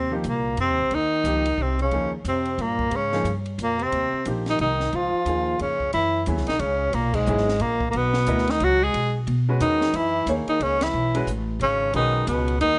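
A breathy, whispered tenor saxophone carries the melody up front with vibrato, scooped notes and a touch of plate reverb, shadowed in the background by a soft, lightly quavering trombone on a second line. This hypnotic, spiritual modal jazz excerpt swings briskly in 3/4 at 180 BPM, with a woody, thumpy pizzicato upright bass and a clear upright piano whose short sustain and audible action noise add intimacy. A compact, dry cocktail drum kit with dark cymbals, a high-tuned snare and a punchy kick sits low in the mix as the harmony settles into F# mixolydian at 5.9 seconds, with band accents at 7.1 and 10.8 seconds.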